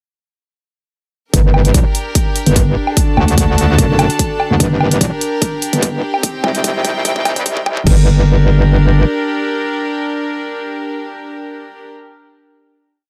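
At 1.3 s, a short, aggressive and heavy wobble dubstep piece bursts in all at once: a metallic, saturated FM bass sits up front, a half-time dubstep kit brings bright closed hats, a low woodblock and crash, and a punchy overdriven electronic kick lands beneath. The bass growls through modulated phrases whose wobble speed keeps changing, its fast attack, chorus and overdrive giving it a gritty, compressed bite. Over a Gm, D, Gm, Cm progression, a clear studio string section holds soft-attack bowed chords that float with a pure sheen, pumped by sidechain against the beat. The whole passage works as a build-up with a filter sweep, a drum fill and a swung half-time feel, while a high-pass-filtered digital ambience hangs around the layered, small-room re-recorded drums. From 7.9 s the drums and then the bass fall away, leaving the strings to sustain a final G minor chord that rings until 11.9 s.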